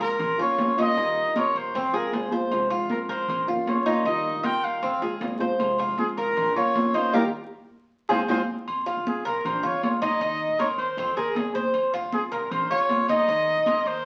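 A straight 4/4 pulse at 156 BPM drives this sultry, nostalgic fragment of Cuban son and guajira in F minor, with bright, high-tuned congas and ringing metal-shell agogo bells and timbales under a woody, thumpy pizzicato upright bass sitting in the background. Up front, a punchy trumpet with vibrato carries the melody while a mellow, double-strung Cuban tres picks arpeggios, and a small fingerpicked nylon-string guitar accompanies until 8.4 seconds. A band accent arrives at 7.1 seconds and a drum fill joins at 7.7, both running to 8.7 seconds, and the whole sounds like a very old 78 rpm record with vinyl crackle and a wet studio reverb.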